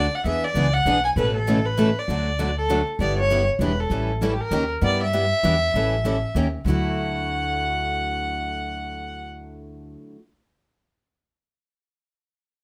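Light reverb surrounds this brief, lively fragment of acoustic string swing in the gypsy-jazz manner, set in a swinging three-beat metre. Up front, a single bowed violin carries the melody with a nasal, earthy tone and light vibrato, stopping at 9.3 seconds. Two picked steel-string guitars supply the accompaniment: a bright, boxy parlour guitar with fresh strings, and a dreadnought sitting further in the background. An upright bass with gut strings is played pizzicato, sounding woody, dark and thumpy near the front of the mix. The harmony opens on E7, Aadd9 and D, then circles through G6, Em7, A7 and Eb7 before landing on Dadd9 at 6.7 seconds.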